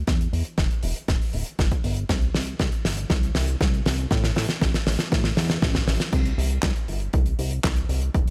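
A chorused synth bass carries the low end of this short italo disco excerpt, its glossy, dark tone built from pulse and sawtooth waves with ring modulation, wave-folding and a filter pluck that gives each note a fast attack before it sustains, moving between D1 and A2. Beneath it, an electronic kick drum lands punchy and tape-tinged with an analog character, set in studio ambience. A damped 70s drum kit sits up front, dry and mid-forward, with a fat snare joined by handclaps, hi-hat and crash cymbal, and it plays a drum fill through the opening stretch up to 6.1 seconds. At that point a new section begins and carries on to the cut at 8.3 seconds. The straight feel and light reverb lend the whole a melodramatic, nostalgic glow.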